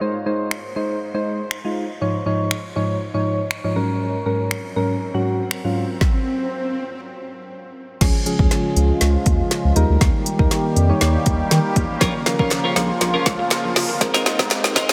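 Upbeat and summery, this dance-pop excerpt at 120 BPM opens with mellow, round electric-piano-like synth keys, treated with chorus and sidechain pumping, over an up-front deep house drum kit of deep kick, woody snare, smooth hats, finger snaps and crash cymbal, while a very quiet electronic swell and riser enters. At 8.0 s a build-up begins with a drum fill and filter sweep as a bright, detuned sawtooth pad and a thick, saturated sub bass join, both sidechain-pumped. A twangy twelve-string electric guitar riff with lush chorus arrives at 12.0 s, followed at 12.5 s by a crisp, distant group handclap, the whole mix drenched in dreamy, huge ambient reverb.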